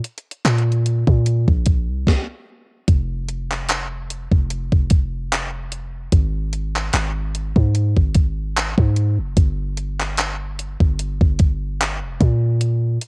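A dry, cassette-taped home recording cut from a longer contemporary R&B piece, it moves at a slow 74 BPM in F minor with a lightly swung 16th-note feel and a sensual, late-night mood. An up-front 80s-style digital drum machine with a thumpy kick, gated-reverb snare, hi-hat and handclaps carries the groove. It is joined at 0.4 seconds by a deep, boomy 808-style sine bass with a noise layer, fast attack and mellow decay, and a brief stop at 2.1 seconds breaks the groove before it resumes at 2.9 seconds.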